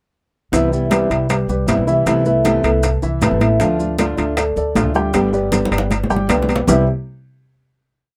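A thumb-plucked flamenco guitar sits up front, strumming with muted slaps over a woody, thumpy upright bass that plays a syncopated pizzicato figure, while a dark baby grand piano runs a mellow montuno in octaves. This sunny, danceable Cuban son and guajira piece moves at 156 BPM in C major through Cmaj7, Amadd9/C, Dm and G. Round, compressed bongos in steady eighths, very quiet damped congas with slaps and open strokes, ringing metal-shell timbales and grainy, vintage maracas fill in the percussion, with a drum fill from 5.5 seconds leading to a final Cmaj7 at 6.7 seconds under light reverb.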